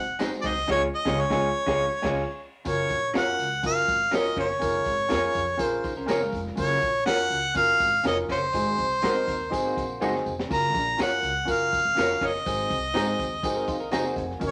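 A clear, up-front harmonica melody and a woody, growly upright bass with tube saturation open this uplifting, danceable slice of uptempo 1960s-style soul at 122 BPM, joined at 0.2 seconds by an intimate upright piano with audible action noise, slightly broken-up lo-fi electric guitar stabs, a crunchy breakbeat kit with a punchy kick and high-tuned snare, and a jingly tambourine in the background, while a dark, clean semi-hollow guitar riff slips in at 5.8 seconds over chords cycling through Gbmaj7, Bbm7/F and Ab7, a drum fill lands at 10.0 seconds and a piano fill closes the passage, set in a wet studio reverb.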